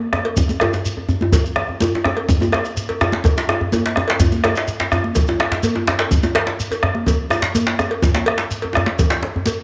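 Earthy and powerful, this West African drum ensemble plays traditional West African music in a straight 4/4 feel, in a short cut from a longer piece. The round bombo sits loudest, starting at 0.1 seconds and sounding through a live room. Two djembes share the groove: one is warm and deep, played with soft hands, and the other is medium-tuned, vintage and band-limited, sitting up front in the mix. Both that second djembe and the high-tuned, ringing congas are struck with hard hands, and the congas sound close and dry. A metallic cowbell in a small room and a grainy, mellow shekere round out the ensemble, with the shekere lowest in level. A moderate plate reverb lends the sound a sense of space.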